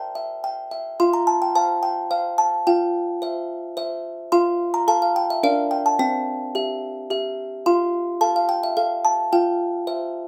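A lone music box opens on a C chord, its delicate, tinkling tones sitting up front in a light reverb. This is a tender, innocent classical lullaby in F major, moving at 108 BPM in a straight 3/4 lilt, tuned to A4 = 438 Hz and cut from a longer piece. The plucked notes of this large box range from C4 to C6, and their slightly out-of-tune character lends the melody a homespun charm. From 1.0 seconds the main phrase unfolds, gently circling between F and C harmonies with a brief turn to Bb over D. The airy sound carries the cradle-song feeling through to the close at 10.3 seconds.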